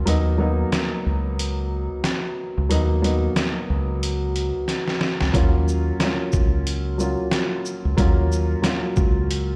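Tough and gritty, this short boom-bap hip-hop excerpt at 91 BPM with a 59% swing sets a woody, vintage upright piano, filtered and run through cassette tape, over a round, direct-and-amped dub bass and a compressed, pitched-down sampler drum kit with a thumpy kick, medium-tuned snare, hi-hat and shaker, moving from Db13sus4 to Ebm9 after a drum fill at 4.7 seconds, all heard in a bare stone room over a big sound system.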